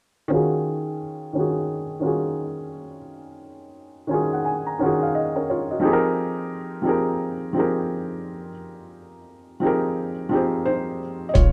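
Hazy and reflective, this lo-fi hip hop excerpt rests almost entirely on a soft, felt-muted upright piano, mellow and intimate up front, its short-sustained Ebm11 and Fm11 chords passing through a filter sweep, a low-pass filter and plate reverb, with a brief piano fill from 3.8 to 5.8 seconds. Only at 11.3 seconds does a gritty, compressed boom bap drum kit arrive, pitched down and tape-warm with a thumpy kick and hi-hat, joined at 11.4 seconds by a deep, thick, saturated sub bass as the clip cuts off. The rough home-demo mix sits in a moderate studio reverb with a loose swing.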